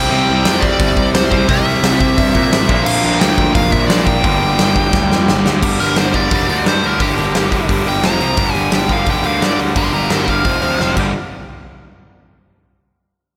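A straight, driving feel in 4/4 pushes this raw, urgent punk rock cut, taken from a longer piece. The big acoustic rock kit arrives at 0.4 seconds and sits up front, with a punchy kick, a medium-tuned snare, hi-hat and bright crash cymbals ringing in a natural, roomy space. Underneath, a growly fuzz bass, picked and overdriven, carries the low end. Beside it, a biting overdriven guitar and a crunchier one in the background both hammer out riffs. A nasal lead guitar through a parked wah sings the melody up high, and after a drum fill at 4.9 seconds it breaks into a solo from 5.6 seconds. Moderate concert-hall reverb gives the whole mix a big arena sound as the chords move between C, B-flat, G minor and F power chords.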